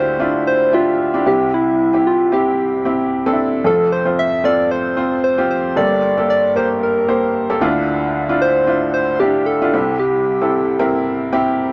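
A soft, round synth lead with a gentle, keys-like FM tone and a touch of chorus carries the melody from the very start, over a brilliant upright piano whose woody, intimate sound carries audible action noise and long sustain up front. This uplifting, anthemic pop passage moves at 113 BPM in 4/4 with a light sixteenth-note swing, cycling through Dmadd9, C, F and Gmadd9 before returning to Dmadd9 and C. The close, dry 1970s-style studio sound with light reverb frames this brief excerpt of roughly 11.7 seconds, cut from a longer piece.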